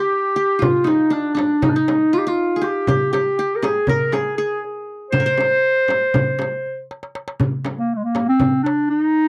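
Hypnotic and soulful, this short excerpt from a longer Turkish makam ensemble piece moves in 9/8 at 239 BPM counted in eighths, in C makam nihavent with A4 tuned to 442 Hz. A warm, roomy clarinet leads up front in a classical solo style, while a bright-edged, triple-strung qanun played with fingerpicks carries a second line until 6.8 seconds. A crisp, metal-shelled darbuka and a small, bright frame drum keep the pulse, and a drum fill at 6.9 seconds leads into a new section at 7.4 seconds, all in a dry, close 1970s-style studio sound with light reverb.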